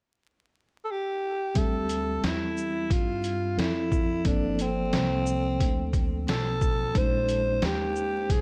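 Over a bed of vinyl crackle, a raspy, growling alto saxophone enters at 0.8 seconds with a subtoned, scooped jazz solo in D minor, its notes trailing a tape echo in a smoky, mellow jazz-hop excerpt. A clean tine electric piano joins at 1.5 seconds, and at 1.6 seconds a woody pizzicato upright bass and a compressed, pitched-down trip hop sampler-style drum kit arrive, with a thumpy kick, snare, hi-hat and shaker carrying 12-bit sampler grit. The kit sits up front in a swung 16th groove at 89 BPM as the harmony moves through Dm11, Gm11 and Bbm11 in a dry, close sound.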